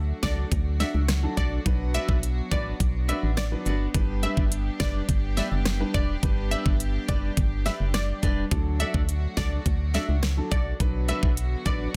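Dancehall at 105 BPM in D major, sunny and summery, with an up-front pop drum kit of knocking kick, fat snare and crisp hats over a dark, hollow FM bass, while a detuned sawtooth analog pluck with chorus and delay carries the melody above fingerpicked flamenco guitar arpeggios, an intimate, boxy grand piano and a reedy, bowed string section, both pumping to the sidechain, moving through D, Bm and G in a dense, heavily limited mix.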